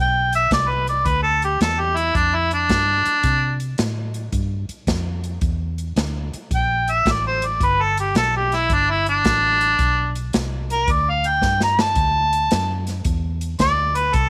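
A mellow harmonica opens this laid-back, swaggering electric blues shuffle, soloing up front with light vibrato and scooped notes in a vintage jazz style over a dark, round, foam-muted electric bass. A swinging big-band drum kit joins at 0.3 seconds with an airy, polished hall sound, a punchy kick, hi-hat and a medium-tuned snare, adding a drum fill at 11.4 seconds as the chords move from G7 through C9 and Gadd9 to Dadd9. Studio reverb surrounds this brief section, which is cut from a longer piece.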